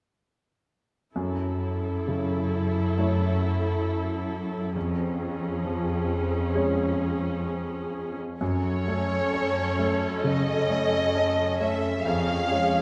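Sorrowful and longing, this cinematic film-score passage, cut from a longer piece, moves at a rubato 66 BPM in F# dorian and is heard from further back in a reverberant scoring stage. A rich, focused viola section, a clear concert grand piano with deep, vintage bass, and a smooth, even cello section holding the low line begin from about 1.1 seconds, settling on F#m7 before shifting to C#/E#. At 8.4 seconds a lush, expressive violin section takes the melody up front with vibrato and a soft attack, while a bright, ringing harp adds arpeggios in the background.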